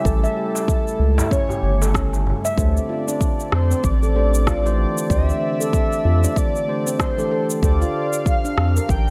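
Organic downtempo in D minor at 95 BPM with a swung 16th-note feel, this mystical excerpt opens on a breathy, flute-like synth lead carrying the melody over a smooth, detuned analog pad that pumps against the sidechain, with tape echo, chorus and 12-bit grit giving the lead a warbling, vintage character. A round, dark analog bass and a deep electronic kick sit up front alongside a layered shaker and rim click, while a ringing, airy handpan plays delayed arpeggios and a crisp, distant darbuka appears only from 0.6 to 2.4 seconds. At 2.6 seconds the harmony moves from A7 to Dm7 and a clean tine electric piano enters with delay and pumping, all within a light digital ambience.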